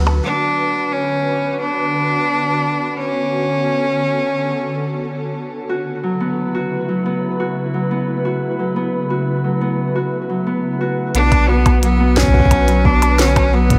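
IDM at 88 BPM in B minor, this intricate, cerebral passage is cut from a longer piece and moves through D and Aadd9 before settling on B minor. A glassy FM pad holds sustained chords throughout, its ethereal tone softened by ensemble chorus, built-in reverb and a vintage 12-bit sampler grit. Alongside it, a fingerpicked Celtic harp rings out up front with arpeggios through a delay. A clear, bowed cello carries the melody with vibrato and intensity from 0.2 to 5.4 seconds, then returns at 11.1 seconds. At that point, a round, deep analog bass comes back after a brief appearance at the very opening, along with a glitchy drum kit of tiny snare, clicky hats and percussion blips treated with overdrive and digital delay, which is also heard briefly at the start. A soft, overdriven electronic kick joins them at 11.3 seconds. A moderate, lush hall reverb gives the whole a spacious depth.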